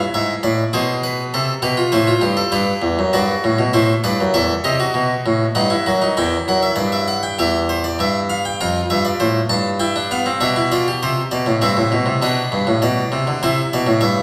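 A solo harpsichord, bright and nasal with a plucked French-style tone, sits up front in a resonant recital hall as a stately yet lively three-part fugue in the baroque style unfolds at 99 BPM in a straight 4/4. The opening passage moves through minor-leaning harmony before the music settles into C major at 7.4 seconds, the thin, keen voices spanning from the low bass to the upper treble. Tuned slightly high, the instrument rings into a lingering church-like reverberation, and the recording is cut from a longer piece.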